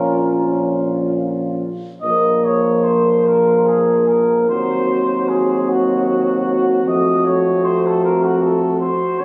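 Classical brass band music in a solemn, elegiac, hymn-like vein, moving in a slow 6/8 with uneven beats and free rubato across this 9.2-second fragment of a longer piece. A dark, distant cornet carries the melody with light vibrato, while a mellow French horn section sings a second line above a close-miked euphonium, a clear, present trombone kept in the background, and a clear tuba on the bass. The ensemble sits in a wet concert hall reverb, captured on a phone in the room, and the harmony settles from Bbm through Cdim/Eb onto F.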